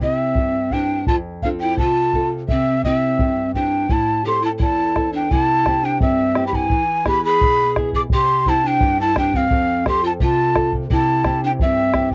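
A close-miked cane quena carries the wistful yet festive Andean folk melody up front, breathy with vibrato and a cassette-tape tint, while a bright, reedy bamboo pan flute with chiff plays a lower second line over a small, fingerpicked nylon-string guitar and a deep, dark, dry bombo, the ensemble moving into a second section at 5.3 s within a moderate booth ambience in this passage cut from a longer piece.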